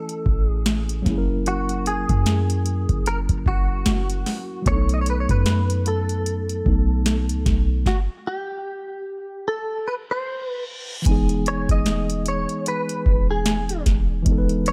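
An up-front, booming analog drum machine with a deep kick, crisp snare and metallic hats, overdriven and re-recorded in a small room, drives this romantic, tender slice of contemporary R&B with a swung sixteenth feel, joined at 0.3 s by a deep, boomy 808-style sine bass. A bright, twangy guitar recorded direct carries the melody through ensemble chorus and tape echo, while a mellow tine electric piano heard through its built-in speakers plays the chords. A stop arrives at 7.9 s, and a reverse cymbal enters at 10.2 s to lead out of it. At 11.1 s a soft, pure FM bell with chorus, phaser and tape echo returns in the background as the music settles onto an Emaj7 chord.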